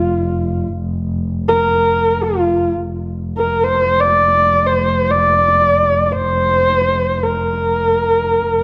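A dark production steeped in moderate spring reverb frames this vast, galloping excerpt of Mongolian folk music in free time, tuned to A4 = 438 Hz, where a husky, up-front horsehead fiddle sings an expressive, bowed melody between F4 and D5 with vibrato and portamento over a woody, bowed double bass that sustains a trembling drone on F1 for the full 8.6 seconds.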